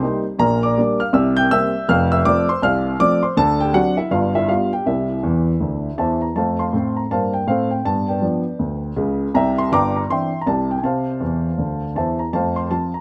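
A dark, mellow baby grand piano sits up front in a light reverb, its long sustain ringing through this short solo stride piano excerpt cut from a longer piece. The playing is swinging and playful, moving at 161 BPM in 4/4 with a 62% swing on the eighth notes, in F major. The piano covers a broad range from F1 up to G6. The first section runs to 6.4 seconds, passing through Gm/Bb, C7, F, D7, G7 and C before the second section returns to F and moves through G7, C9 and F/C. Fills mark the close of each section, one from 5.2 to 6.4 seconds and another from 11.2 to 12.3 seconds, before the piece settles on F at 12.3 seconds.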